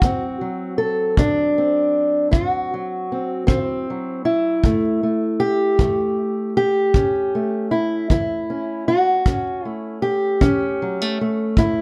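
A fingerpicked old ladder-braced acoustic guitar, dark, woody and boxy with old strings, carries the melody up front in this soulful, laid-back acoustic country blues excerpt at 52 BPM in a straight 12/8, moving from D7 to A7 at 4.6 seconds over a tight, natural kick drum played with brushes in a small room, all under light reverb.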